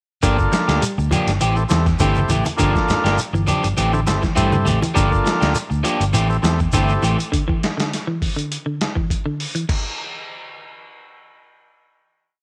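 A round, punchy fingered electric bass drives this short, hypnotic afrobeat piece with a syncopated riff over a gritty, compressed sampler-style drum kit with a thumpy kick, while a buzzy vintage combo organ adds rootless chord stabs and a slightly broken-up electric guitar strums funky upper shapes through subtle chorus and tape echo. In the background, a bright, twangy clean guitar picks an arpeggiated ostinato, a grainy shekere shakes close and dry, and low-tuned congas with a thick-skinned tone play from 1.1 to 5.0 seconds, all over a groove that alternates Gm7 and Am7 before settling on Dsus2. Most parts drop out just after 7 seconds, leaving the clean guitar and drums to carry on until a final chord rings in light reverb from 9.7 seconds.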